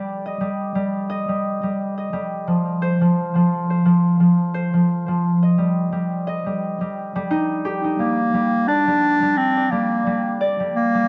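Wistful and intimate, this folktronica excerpt moves at an easy pace with a gentle 16th-note swing, carried by a mellow, thumb-plucked concert harp whose ringing arpeggios sit up front from the start over chords moving from Eb through F5 and Eb/G to Gm. At 8.0 seconds a warm, smooth-topped clarinet enters up front with a classical-style solo melody in its low register, all set in a light reverb.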